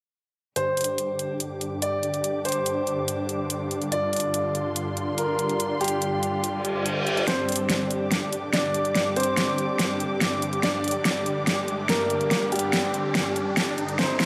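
Heavy wobble dubstep in a menacing, aggressive half-time feel, this excerpt pairs a clear, intimate concert grand piano melody with audible action noise and tape echo against huge, detuned supersaw chords whose filter sweeps across the first 7.3 seconds, a dark, bowed string section fading in with light vibrato, and an overdriven, up-front electronic drum kit with a huge snare, before a reverse cymbal at 6.6 seconds leads into a build-up with a drum fill and a riser in a lush hall.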